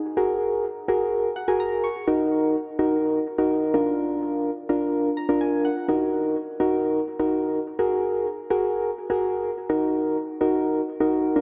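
Nocturnal and melancholic, this short pop fragment is cut from a longer piece and rests entirely on a single part: soft, electric-piano-like synth keys playing alone from 0.2 s to the close. Their tone is round and full-bodied, with a fast attack that decays gently, and it sits up front, colored by chorus and an analog delay. The harmony moves through Gbadd9, Ebm and Bb, then returns to Ebm, Gbadd9 and finally Ebm again, holding a steady, straight pulse in 4/4. Brief fills from the keys appear around 1.1 s and again at 4.9 s, adding small flourishes to the chords. A lush hall reverb with a long tail surrounds the instrument, and the dark, warm production deepens the late-night mood.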